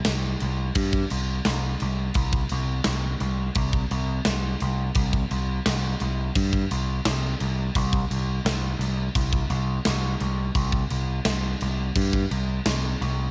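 A growling, overdriven picked electric bass sits up front in the low register while a tight, polished metal drum kit with airy room sound, bright cymbals, a medium-tuned snare and a tight kick drives this relentless, heavy 86 BPM heavy metal excerpt in 4/4, tuned to A4 = 437 Hz and captured dry on a home cassette recording.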